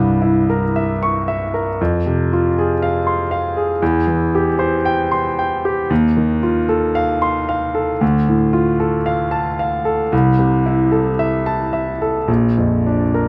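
Loosely rubato at about 57 BPM in 4/4, this dreamy, tender romantic nocturne, cut from a longer piece, features a single smooth, vintage-toned grand piano placed up front and spanning Bb1 to Db6 as it drifts from C7b9 through Fm and Dm toward a closing Bb, caught by close, detailed microphones with a light touch of reverb.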